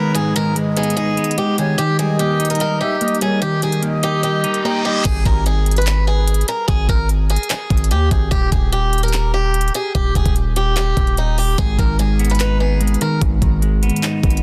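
Brooding, menacing trap in a half-time feel, this excerpt opens with a boxy, picked swing-style acoustic guitar carrying the melody through tape echo, shadowed by an airy concert flute line, a clean semi-hollow electric guitar accompaniment, a glassy FM pad in the background and a very quiet downlifter and reverse cymbal. The trap kit, with its knocking kick, crisp hats, handclaps and crash, drops out just before 5.1 seconds, when a punchy, heavy 808-style bass arrives up front and the flute, pad and electric guitar fall away. The electric guitar returns at 11.6 seconds, and the dry, dense, heavily limited mix keeps the low end hard and close.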